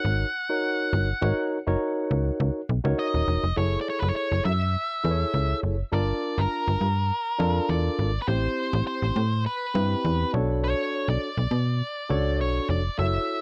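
Set in a straight 4/4 at 102 BPM, this early-eighties boogie funk cut moves with a danceable, slick stride. A slap-like FM bass sits up front with a snappy, metallic attack that decays, its digital tone anchoring the low end from the start until 13.2 seconds. A barky tine electric piano, clean and heard through a combo amp, carries the accompaniment across its range, while an octave-fuzz lead guitar, dark and picked with distortion, takes the melody. The harmony opens on a rootless G#9sus4 before shifting at 3.6 seconds into a new section that steps through F#m9, Gm9, Am9 and Bm9. The sound is dry and close, like a 1970s studio session with little reverb, and the piece is cut from a longer work.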